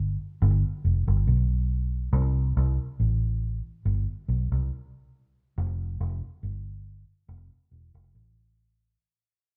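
A straight 4/4 pulse at 70 BPM carries this laid-back, uplifting reggae cut in C major, tuned to A4 = 441 Hz and taken from a longer piece. A vintage foam-muted electric bass plays alone from 0.0 to 9.0 seconds, sitting up front between E1 and C2 with a dark, round, amped tone and a slapback echo. A moderate echo chamber reverb fills the space, and the cut fades out from 2.1 seconds to its end at 9.0 seconds.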